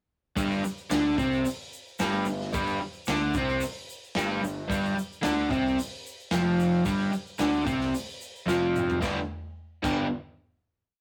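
A crunchy, overdriven electric guitar leads from 0.4 seconds with an up-front, double-tracked octave riff on a G5 chord, joined at once by a fuzzed, picked electric bass doubling the riff in driving eighth notes, a gritty, saturated breakbeat drum kit with dark cymbals and a tight kick, and a grainy egg shaker in the background. This raw, swaggering garage rock piece in G major moves at 111 BPM in a straight 4/4, its rough rehearsal-room sound carrying light reverb. A drum fill at 8.5 seconds leads into a final G chord at 9.0 seconds.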